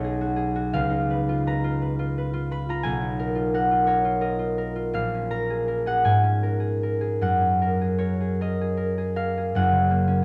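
Classical solo harp music, graceful and serene, moves in a rubato 6/8 at about 48-60 BPM in F# major, taken from a longer piece. The concert harp sits up front alone from 0.0 to 10.2 seconds, fingerpicked and ringing with a warm, acoustic tone across its span from F#1 to B5. Its harmonies drift through B69, C#13, Bmaj7#11 and A#m7 before settling on F#add9 at 7.2 seconds, captured by close, detailed microphones in light reverb.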